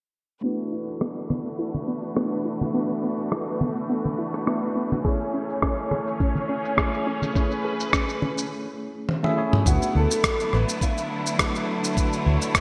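This sunset chillout excerpt has a relaxed, warm mood and a lightly swung feel in 4/4. A worn, slightly out-of-tune tine electric piano, lightly overdriven with delay, plays accompaniment while a bright, biting symphonic string section holds lush, vibrato-laden chords roughened by vintage 12-bit sampler grit. A soft, round, warbling pluck in the background spins chorused arpeggios until 8.4 seconds, and a filter sweep runs across the opening stretch on both the electric piano and the pluck. A dusty, compressed sampler-style drum kit with rim clicks, shaker and toms sits up front in gated reverb, joined by small-room congas and, from 5.0 seconds, a knocking electronic kick, with a drum fill leading into the new section at 9.7 seconds. There a small, thumb-plucked nylon-string guitar takes a brief chorused melody, and a dark, punchy fretless electric bass enters up front, all set in a lush hall reverb with a bright 1980s-style digital sheen.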